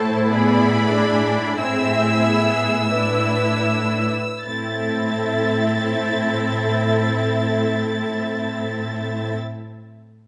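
From the first moment, an up-front cello section holds a low A beneath a bright, intense viola accompaniment, a close second violin line and a distant, lush violin melody high above, every section bowed with vibrato, in this elegiac, solemn excerpt of a slow romantic string-orchestra movement in 3/4 and A minor, played with rubato at 36-54 BPM and slowing over the first 4.5 seconds as an E7 over A resolves to A minor inside a moderate scoring-stage reverb.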